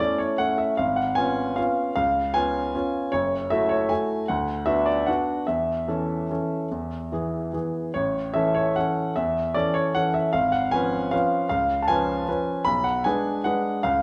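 Playful and sparkling, this classical piano waltz in A major moves in 3/4 with a rubato feel, its tempo floating between 142 and 163 BPM and its tuning set to A4 = 439 Hz. A clear baby grand plays solo through the full 14 seconds, ranging from F#1 to B5 and sitting up front with an intimate, natural tone where the action noise can be heard. The harmony passes through C#7/G#, F#m7 and Bm/D before returning to A and closing on G#dim/B, all set in a wet recital hall reverb, in a passage cut from a longer piece.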